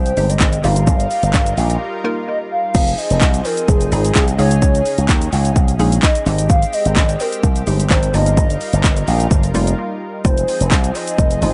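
A bright, punchy slap bass run through an envelope filter drives this energetic 128 BPM dance-pop cut in F minor, sitting up front beside an overdriven house drum kit of cracking snare, crisp hi-hats, handclaps, shaker, crash and a hard-hitting kick that enters at 0.1 seconds. Over them, a woody, clarinet-like synth lead carries the melody with vibrato, chorus and analog delay, while a bouncy square-wave pluck and a lush, airy unison pad fill out the harmony, both pumping with the sidechain. Brief breaks at 1.8 and 9.8 seconds punctuate the driving groove, and the echo-heavy mix has light reverb and a rolled-off top end.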